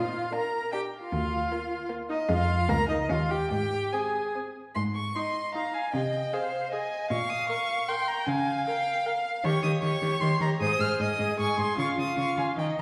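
A rich violin melody with vibrato opens over a focused viola accompaniment and a clear cello bass line, with a second violin line entering at 0.3 s, in this lively, graceful classical-period string quartet movement in Ab major, taken at a quick 153 BPM in 3/4 with a rubato feel and heard from further back in a recital hall whose reverb lingers around the smooth, even bowing of the violin and cello.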